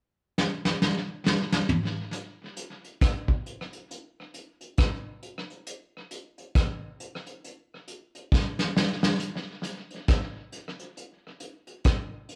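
A 68 BPM reggae groove in 4/4 with a 16th-note swing carries this bittersweet, longing excerpt, played on a lo-fi vintage brush drum kit of hi-hat, punchy kick, rim click, medium-tuned snare and toms that enters at 0.4 seconds with a fill, sits up front with a muffled, rolled-off top and tape echo, and adds another fill at 8.3 seconds, heard in a moderate studio reverb that captures a band playing live in one room.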